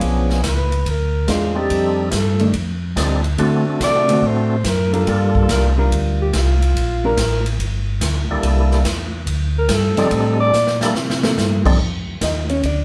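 A swinging 4/4 groove at 143 BPM drives this short, soulful and greasy soul jazz organ trio cut in F mixolydian. A swinging big-band drum kit with a punchy kick, medium-tuned snare, ride, hi-hat and crash plays throughout with an airy, polished sound, and adds a fill from 10.5 to 11.4 seconds. Underneath, a mellow, round tonewheel organ carries the bass line through a lightly overdriven slow rotary speaker, while a second, percussive tonewheel organ sits up front with key click and second harmonic percussion, playing melody phrases that stop at 5.7 seconds and return at 8.3. A dark alto saxophone takes the solo from 0.5 seconds, its jazz-style line full of vibrato, scooped notes and a smooth top. A clean, fingered hollow-body electric guitar supplies accompaniment and then steps into a brief solo at 11.8 seconds as the chords land on F5. The band sounds as if playing live together in one small room, with a fairly wet reverb around them.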